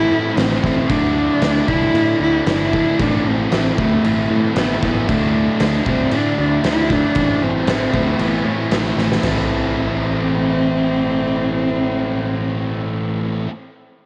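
A woody, bowed cello sings up front with close vibrato in this brooding, quiet-loud alternative rock excerpt in A minor at 115 BPM, moving between Am and Dsus2. Beneath it sit three guitar riffs in the background: one crunchy and tape-worn, one bright with spring reverb, and a very quiet, double-tracked fuzz part, all over a growly, direct picked bass. An oversized, low-tuned acoustic kit with a punchy kick, fat snare and gritty saturation comes in at 0.4 s, plays a fill at 9.0 s and stops at 9.4 s, leaving the small-room ambience of this cassette home recording around the closing bars.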